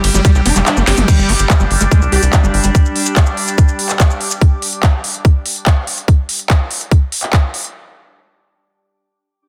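Psychedelic trance fragment, intense and alien, where an up-front tight electronic kick and a cracking, tape-warm techno kit drive a punchy saturated sequencer bass, while a nasal overtone-sweeping drone, a squelchy screaming distorted acid line, a swarming detuned rave lead, grainy maracas and a very quiet juicy blip pluck crowd in behind, the kick dropping out at 0.7 seconds before a drum fill and an ethereal airy pad arriving at 2.3 seconds as the acid line gets a filter sweep in a dense, heavily limited mix.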